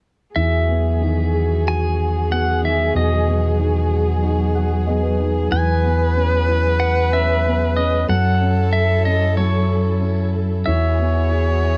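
Nostalgic and intimate, this acoustic folk-pop ballad at 93 BPM in E major opens on a brief stop before a single bowed viola with an airy, nasal sul tasto tone enters at 0.3 s, joined at 0.4 s by a bright, twangy pedal steel guitar carrying the melody with slide and volume swells, a felt-muted upright piano offering mellow accompaniment with audible action noise, veiled con sordino strings sustaining chords in the background, and a round, dark fingered electric bass up front, set in light reverb as the harmony moves from Emaj9 through C#m7/E and F#m7 to Eadd9.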